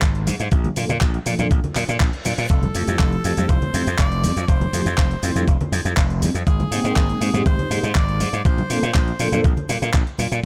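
A raspy, forceful tenor saxophone enters at 2.5 seconds with a tape-echoed pop-style solo over this groovy, feel-good nu-disco excerpt, as round, detuned synth brass with chorus, sidechain pumping and analog delay moves through Bbmaj7, Fmaj9 and Abmaj9 chords. Underneath, an up-front, growly overdriven slap bass and a thumpy electronic kick drive the groove, joined by a dusty sampler-style kit of handclaps, hi-hat and shaker, and very quiet ringing cabasa and congas. A reverse cymbal flickers in the background at 1.7 seconds, and a filter sweep runs throughout the dry, echo-heavy mix.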